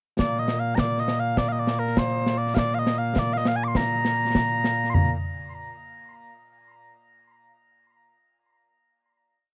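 Mellow, sweet small bagpipes with tape echo carry an ornamented modal melody up front in this brief, stirring and ceremonial Scottish pipe tune in 6/8 at 101 BPM in Bb major, accompanied from the same moment at 0.2 seconds by concert snare drum, concert bass drum and concert toms with dark cymbals playing a close, dry marching snare pattern, all captured in a dry, close 1970s-style studio sound with light reverb before a final note from 4.9 seconds.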